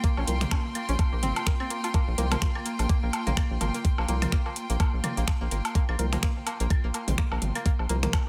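A swung sixteenth-note groove in 4/4 drives this cool, sparse minimal techno cut from a longer piece. An up-front, knocking electronic kick with overdrive anchors it, layered with an overdriven garage kit of finger snaps and metallic hi-hats, and electronic woodblock and toms that were re-recorded in a large room and carry tape echo. A rubbery, hollow square bass enters at 0.2 seconds, bouncy and up front, pumping with the sidechain. A twangy, string-like resonator pluck plays a bright riff through chorus and tape echo, while a dark, organ-like percussive stab joins in the background at 0.3 seconds with its own chorus and echo. Beneath them, a dark studio string section bowed sul tasto with light vibrato adds an intimate, soft-edged texture that also pumps with the sidechain, all in a dry, close sound.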